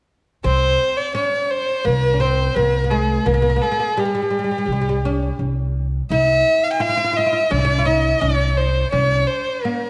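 A moderate concert-hall reverb, about 2.0 seconds long, surrounds this short Arabic passage cut from a longer piece, set in C maqam huzam at 85 BPM in a straight 4/4. The mood is festive yet stately. A single dark, bowed violin carries the melody up front with vibrato, moving between G4+41c and G5+41c. Beneath it, a woody, fretless oud, plectrum-plucked on double strings, adds a deep second line, while a thumpy pizzicato upright bass with steel strings holds C2, also up front. All three parts enter at 0.4 seconds; the bass stops at 9.2 seconds, and the violin and oud carry on to 9.9 seconds.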